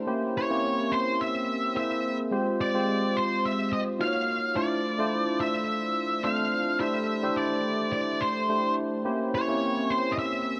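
Pop at 107 BPM in 4/4 with a light sixteenth-note swing, this short cut from a longer piece feels glossy and breezy. A tine electric piano carries the accompaniment from the very start, its clean, direct tone sitting up front and shimmering through an analog chorus. At 0.4 seconds an octave-fuzz lead guitar takes the melody, picked and distorted with a dark, electric bite, staying in a narrow upper range up front beside the keys. The harmony moves through rich, colorful chords, opening on C7b9 and passing through Caug7, Fmadd9, Ebm9, Dm9 and C69 before returning to C7b9. A moderate plate reverb with a 3.1-second tail surrounds both parts, and the overall production is dark and warm, with the tuning sitting slightly below standard pitch.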